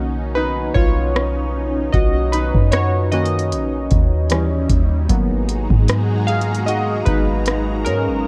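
A lightly swung 76 BPM groove in 4/4 drives this sensual, longing contemporary R&B fragment in G# dorian: a booming, overdriven analog drum machine enters at 0.8 s with a deep kick, metallic hats and rim clicks beside a boomy 808-style sine bass, while round, detuned analog keys with chorus and a filter sweep carry the lead over a lush, bright unison pad treated with chorus, phaser and sidechain pumping, the harmony moving from Bmaj9 to D#7b9 and G#m7 in a dry mix steeped in worn, warbling cassette-tape pitch drift.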